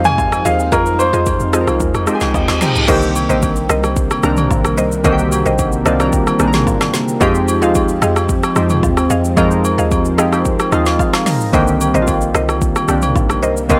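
Amapiano at 111 BPM in C minor with a late-night, hypnotic mood, this cut from a longer piece opens with a brief up-front grand piano melody through analog delay over glassy digital keys, a background organ-like ensemble string pad with sidechain pumping, a deep, round log drum bass, a deep house kit with a woody snare and dark hats, and agogo bells and woodblock, soon joined by a bright, mallet-like synth pluck, before a reverse cymbal and keys fill at 2.1 seconds lead into the drop at 2.9 seconds, all cycling between Fm7 and Cm7 in a dry, gritty recording with light reverb.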